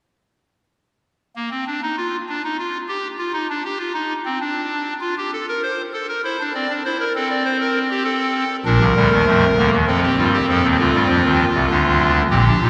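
A pipe organ's clarinet reed stop, hollow and placed up front with a touch of chiff and a tremulant, carries this joyful, elegant baroque-style three-part fugue alone from 1.4 to 12.7 s, ranging from Bb1 to D5. At 99 BPM in a straight 3/4, the voices move through harmony that settles on F and travels through C7, Bb and F7 before landing on D minor. The playing sits in a cathedral reverb with a 5.2-second tail, recorded in a church or concert hall, in a passage cut from a longer piece.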